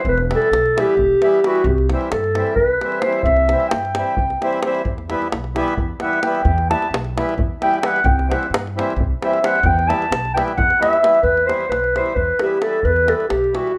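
A mellow, distant clarinet opens this fiery, virtuosic Balkan wedding-band excerpt in 7/8, with a deep, close and dry davul, soon joined by a woody pizzicato upright bass on steel strings and a reedy, airy accordion, while the clarinet plays up front with plate reverb and its solo runs until 11.2 seconds, in a rough home-demo mix with a wet studio reverb.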